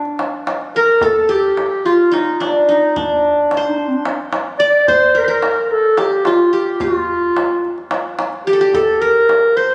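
Captured on a phone in a compressed, reverberant hall with the murmur of a club around it, this fragment of a longer Turkish makam piece moves in a melancholic, hypnotic 7/8. A dark, distant clarinet carries the melody up front in a classical solo style, while a bright, plectrum-plucked qanun with triple strings plays a second line just as close. Beneath them, a deep clay-shell darbuka with a natural skin sits low in the mix, its large, saturated tone joining at 0.1 seconds.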